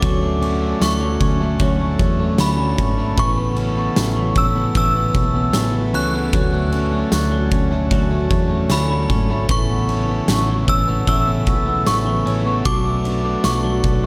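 Dreamy and floating, this dream pop excerpt drifts at 76 BPM in A major, moving through Dmaj7 and Aadd9 before touching Bm7 near 12.7 seconds. A chiming, inharmonic FM synth carries the high melody through ensemble chorus, phaser and analog delay, while a bright, twangy clean electric guitar picks arpeggios wrapped in lush chorus and delay alongside a full pipe organ principal chorus holding romantic sustained chords. Underneath, a round, hollow-body picked bass and an oversized, low-tuned kit with a punchy kick, fat snare, dark ride cymbal and tambourine sit up front with gritty saturation and a pumping room sound, all inside an echo-heavy mix with light reverb.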